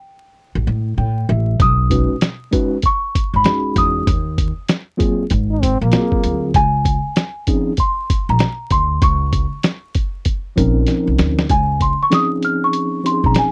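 Jazz-hop at 97 BPM in Db major, cool and relaxed, with a 16th-note swing: a delicate, bell-like small celesta carries the melody over pizzicato upright bass with a woody, steel-string tone and a mellow tine electric piano heard through its built-in speakers, which opens with a short fill. A compressed, pitched-down, muffled sampler-style drum kit with a thumpy kick enters at 1.6 seconds, and a clear, close-miked jazz trombone adds a brief vibrato second line at 5.5 seconds. After a drum fill, the celesta takes a sweet, airy solo from 11.5 seconds in this dry, close 1970s-style studio sound dusted with vinyl crackle.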